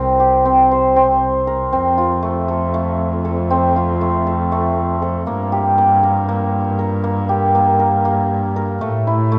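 A shimmering, ringing hammered dulcimer spins mellow arpeggios up front in this pensive, restless excerpt of contemporary chamber music in 7/8, over a clear, focused bowed double bass with vibrato, both heard throughout in a moderate recital hall reverb and colored by the warbly pitch drift of worn old cassette tape as the chords move from C5 through F and G minor to A5.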